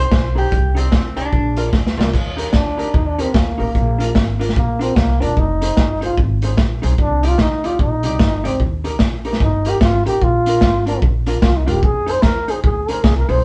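Cheerful, joyful ska at 149 BPM in Eb major with a swung feel, where a nasal, metallic resonator slide guitar states the melody for the first 1.9 seconds before a drum fill hands over to a breathy, intimate trombone solo from 2.5 seconds, carried by a dark, clean hollow-body jazz guitar, woody pizzicato upright bass and a boomy, gritty garage drum kit with a vintage sampler crunch, all in a small room on cassette tape.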